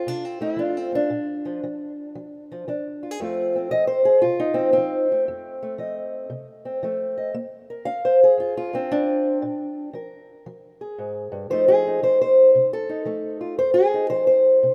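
A swung, loping 4/4 at 115 BPM drives this rollicking, gritty slice of acoustic country blues in F mixolydian, cut from a longer piece. A lone fingerpicked, ladder-braced acoustic guitar sits up front for the full 14.7 seconds, its old strings giving a dark, woody, boxy tone as it ranges from F2 to F5 through changes from F and Bb to F7 and Bb7. A lush hall reverb surrounds the rough home-demo sound.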